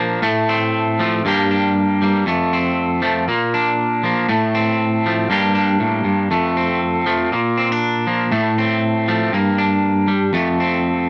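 The rhythm moves at 118 BPM in 4/4, with a light 55% swing on the sixteenths giving this short highlife passage an easy lilt. A single electric guitar carries the whole fragment from 0.0 to 11.1 s, picked and twangy, sitting up front with a bright, slightly broken-up edge and a shimmering harmonic tremolo. It ranges from F2 up to G4 in F major, cycling through a sunny progression of F/A, Gm, F and Bb that repeats across the clip. The mood is sunny and joyful, a cheerful fragment cut from a longer piece. The sound is dry and close, in the manner of a 1970s studio, with just a touch of light reverb around the guitar.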